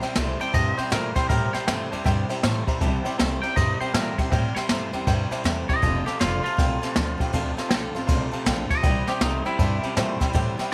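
This rollicking, upbeat rockabilly excerpt opens with the band already swinging: a jazz kit played with brushes sits up front, with a boomy kick, a medium-tuned snare and dark ride cymbal in an airy, polished studio sound. Beneath it, a woody, thumpy upright bass on gut strings is plucked, while an electric guitar through a small old amp plays a low, slightly broken-up, lo-fi riff. A picked dreadnought acoustic guitar and an intimate upright piano, with audible action noise and long sustain, fill out the accompaniment in the background. At 0.4 seconds a clean, twangy electric guitar takes the melody, its bright tone touched with subtle chorus and tape echo. The harmony moves from C to F at 5.8 seconds and back to C at 8.8 seconds, all wrapped in a small room ambience.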